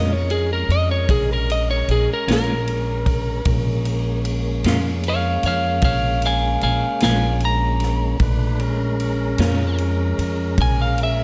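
Bathed in a big, arena-sized reverb, this smoky, soulful slow blues excerpt in Bb minor at 50 BPM in 12/8 rests on a Bbm7 chord as a slightly broken-up, compressed lead electric guitar with slapback echo solos up front over a woody, growly pizzicato upright bass, a key-clicking tonewheel organ with overdrive and slow rotary speaker, a clean background electric guitar with tremolo and slapback echo that drops out at 9.6 s, and a swinging big-band drum kit of punchy kick, ride cymbal and snare that enters at 0.3 s.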